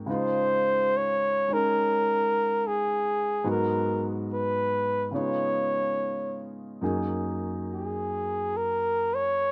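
A gently swung 4/4 pulse at 71 BPM sets an unhurried jazz ballad feel, romantic and tender throughout this brief 9.5-second fragment cut from a longer piece, tuned slightly low to A4 = 439 Hz. A concert grand piano opens the accompaniment at 0.0 seconds, its warm, natural tone and deep bass sitting up front as it supports the harmony. Almost at once, at 0.1 seconds, a mellow flugelhorn takes the solo melody in a present, jazz-style voice with light vibrato, staying within a compact range of Ab4 to Db5 and sounding clearly above the piano. The harmony moves from Dbmaj9 through Abm7 and Db9 to settle on Gb69. The sound is intimate and dry, with little reverb and a rounded top end.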